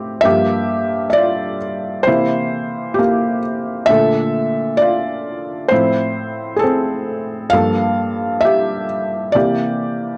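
Swung sixteenths give a lazy, unhurried sway to this melancholic, nostalgic hip hop fragment, where a felt-muted upright piano plays alone from 0.0 to 10.2 seconds, its soft, intimate tone sitting up front with audible action noise and short sustain in a small, moderately reverberant room, while the gritty recording carries it through a chord cycle of Gm7, C7, Bbmaj7, Fmaj7/A, Gm9 and C9.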